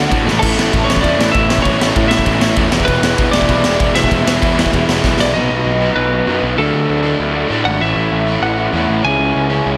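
A straight 4/4 punk rock drive at 195 BPM in E mixolydian, this energetic, upbeat passage cut from a longer piece puts a saturated, gritty garage drum kit up front in a bright stone room, with a punchy kick, fills at 0.3 and 5.0 seconds and a stop at 5.3 seconds as the music moves to half time, while a growly, fuzzed electric bass, two picked, overdriven rhythm guitars in the background (one compressed, one lo-fi) and a slightly broken-up lead guitar carrying the melody ride chords from A and E to B, D and C#m under light reverb.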